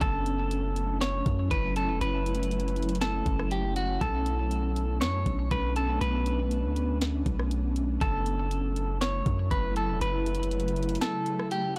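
A clean, picked electric guitar melody leads this melancholic, spacious piece of atmospheric cloud-rap, with delay trailing its compressed, scooped tone as it sits up front over a slow-attack pad of detuned, airy unison voices thickened by ensemble chorus and reverb. Underneath, a deep sine 808-style bass rolls long, decaying notes with a fast attack, while an electronic trap kit plays at 120 BPM in a half-time 4/4 feel, pairing a knocking kick and rim clicks with bright hi-hats and a sharp snare given soft clipping. The harmony moves from F#m7 to Bm9 and back to F#m7, in a tuning pitched slightly low at A4 = 438 Hz. The recording has a blown-out, overdriven digital ambience that lends the spacious mood a gritty edge. Near the close of this excerpt, the bass stops at 11.0 seconds and the kick drops out from 11.0 to 11.8 seconds, leaving guitar, pad and the rest of the kit to finish the cut.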